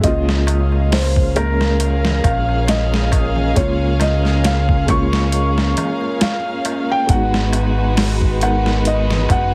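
A round, punchy dub bass sits up front in this melancholic, brooding trip hop excerpt alongside a thumpy, overdriven sampler-style drum kit, a felt-muted upright piano whose gritty 12-bit melody carries tape echo over its own tremolo-shaded accompaniment with audible action noise, a dark, woody violin section holding sustained bowed chords with vibrato, and a crisp metal-shell darbuka in the background, all heard through a heavily compressed, radio-like small room sound that moves to an Abm7 chord at 7.1 seconds.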